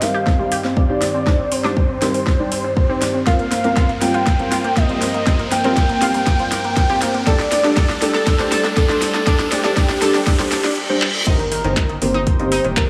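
This expansive, emotional progressive house build-up in G minor at 120 BPM opens on a velvety, vibrato-tinged synth lead with chorus and delay, carried over a breathy, pumping pad, a vintage warbling pluck under a filter sweep, dark detuned chord stabs and a layered drum kit with a fat snare and metallic hats. A deep, up-front kick arrives at 0.3 seconds, while a background riser and a reverse cymbal climb under a drum fill and a lush hall reverb. At 11.3 seconds the drop lands with an impact and a round, sidechained analog bass, the chords shifting through Cm/G, Bbsus2/G and Gsus2 before settling on Eb6.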